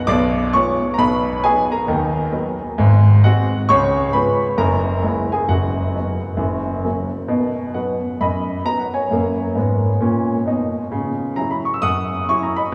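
Exuberant and swinging, this short stride piano excerpt in B major moves at 133 BPM in 4/4 with a 64% swing on the eighth notes. A clear, up-front grand piano plays solo from start to finish, ranging from F#1 to E6 through changes such as Bdim7, G#7, C#7 and F#9 before settling on B at 7.3 seconds. The present piano tone sits in a wet, cathedral-like reverb with a long 5.2-second tail, giving the lively playing the resonant air of a church or concert hall.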